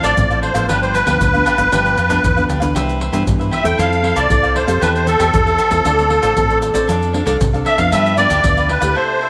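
A sunny, festive samba-choro fragment at 116 BPM opens with everything at once: a reedy, shimmering musette accordion carries the melody up front with a slapback echo, over crisp picked cavaquinho, thumb-plucked classical nylon-string guitar, and a dark, round fingered electric bass. Tube shaker, pandeiro and a deep surdo keep a festive pulse from a small acoustic room, while the harmony moves from Dm9 through G7, Cmaj9 and Fmaj7 before settling back onto G7. The ensemble sits in a moderate plate reverb, and the bass drops out at 8.9 s just before the cut at 9.3 s.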